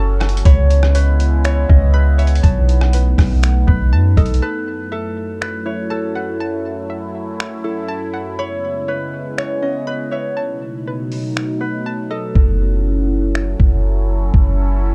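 Hazy, ethereal hip hop in an atmospheric cloud-rap style with a half-time feel, cut from a longer piece. A gritty, pitched-down sampler-style drum kit of thumpy kick, rim clicks, finger snaps and hi-hats sits up front beside a deep, round 808-style bass that drops out at 4.4 seconds and returns at 12.4 seconds, when the hi-hats fall silent. Over a bright, detuned sweeping pad with chorus, phaser and sidechain pumping, a ringing acoustic concert harp carries the melody through tape echo, while a hollow, warbling square pluck spins vintage arpeggios in a dark, warm and dry production.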